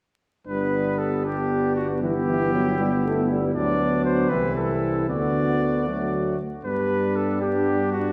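A classical brass quintet piece in a straight 6/8, triumphant and warm in mood, cut from a longer work. A clear trumpet carries the melody up front with light vibrato and a smooth top, while a second trumpet of mellower tone sings a supporting line beneath it. A French horn and a distant, roomy trombone fill out the accompaniment from the background, and a vintage-toned bass trombone anchors the bottom up front. All five play together from 0.5 to 8.1 seconds, moving through a stately progression that settles back home on G. The ensemble sits in a lush scoring-stage reverb that suggests a church or concert hall, with a faint layer of vinyl crackle lending an aged patina.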